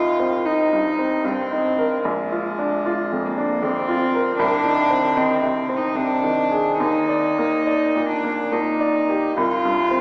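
A bright upright piano and a single bowed cello begin together, the piano carrying the accompaniment while the cello sings a second line in this tender, hopeful neoclassical fragment cut from a longer piece. The piano sits up front with a brilliant, woody, polished tone, ranging from deep bass notes up into its upper middle register. The cello, also close and present, is played sul tasto with a soft attack, giving a pure, slightly nasal, floating voice. The music moves in a gentle three-beat metre with a rubato feel, its harmony drifting from Cm7 through Bb7 and Ab/C before settling onto a bare C5 at 9.4 seconds. A wet reverb lends the sense of a church or concert hall, though the overall sound has a small-speaker quality.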